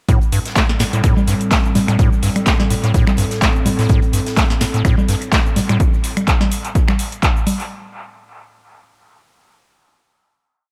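An echo-heavy mix with light digital ambience frames a short, hypnotic and driving acid house piece at 126 BPM in A minor, swung on the 16ths and built as a single drop over an Am7 chord. A punchy, tape-warm four-on-the-floor kick sits up front beside a booming analog drum machine with a crisp snare, metallic hats, claps, snaps, shaker and low conga steeped in dub echo, while a very quiet, polished studio kit plays a looped, edited breakbeat beneath. A squelchy, resonant square-wave acid bass runs an accented eight-step riff with a filter sweep, cassette-tape grit and dub echo, and from 0.4 seconds a warbling, nostalgic pad holds dark sustained chords with chorus, reverb and sidechain pumping until 5.8 seconds, after which the kick carries on beside the drum machine until 7.3 seconds and the drum machine runs on to 7.7 seconds.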